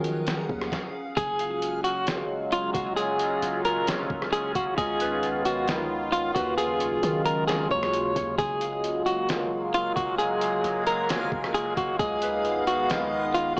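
Atmospheric cloud-rap hip hop with a dreamy, floating half-time feel, cut from a longer piece and soaked in worn, warbling cassette tape with small-speaker sound and light reverb. A resonant, detuned sawtooth pad with chorus, phaser and sidechain pumping holds sustained chords over a deep, mellow sine 808 bass and a gritty, pitched-down trip hop sampler kit of thumpy kick, hi-hat, rim click and snare. A reversed, granular swelling texture hovers in the background at the opening and returns at 9.2 seconds, and after a brief stop a clean, fingered electric guitar with tremolo and tape echo carries the melody up front from 1.2 seconds, alongside a ringing, fingerpicked concert harp playing arpeggios further back.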